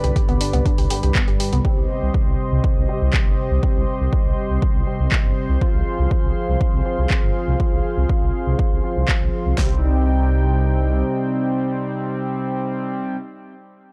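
This excerpt has a dry, gritty hardware sound with a cassette-tape grain, cut from a longer melodic techno track that feels driving and hypnotic at 121 BPM in straight 4/4, in C harmonic minor. An up-front, rumbling detuned saw bass sits beneath a deep house drum kit with a punchy kick, fat snare and handclaps, while an analog drum machine adds tape-softened claps and sidechain-pumped hi-hats. A smooth, warbling vintage pad holds sustained chords with chorus and pumping, and a woody, nasal wave-folded pluck plays short arpeggios through subtle chorus and analog delay until 1.6 s. Edgy, bright sync-sweep polysynth stabs carry chorus and analog delay, with a filter sweep running through the opening section as the harmony moves from G to C minor and F minor. The drums drop out by 9.7 s, leaving the pad, stabs and bass to return to C minor, with the bass stopping at 11.0 s.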